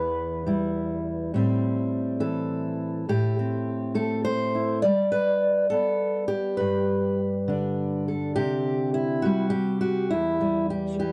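Folk piece for solo fingerpicked steel-string acoustic guitar in a straight 6/8, haunting and intimate, its up-front, auditorium-toned strings with audible finger squeak moving from Em through Am7, Gadd9 and Csus2 before returning to Em at 10.1 seconds, all captured in a dry, close 1970s-style studio sound with light reverb in a brief cut from a longer piece.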